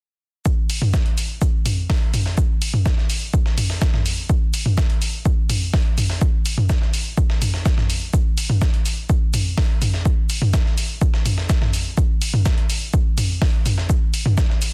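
A layered, punchy electronic kick sits up front from 0.5 seconds, driving this hypnotic, cinematic techno groove at 125 BPM in a straight 4/4. Beside it, a dry analog drum machine enters at 0.7 seconds with hi-hats and toms, both pumping through sidechain compression. Further back, a gritty, compressed sampler-style soul kit adds hi-hat, shaker and a medium-tuned snare, its high-pass filtered hats and percussion also pumping, while its thinned room sound hints at a large space. All three kits carry a small room ambience, but the mix has little reverb overall, and the dense, heavily limited modern master keeps the drums tight and forceful. Cut from a longer piece, this single percussion-only section runs until 14.7 seconds.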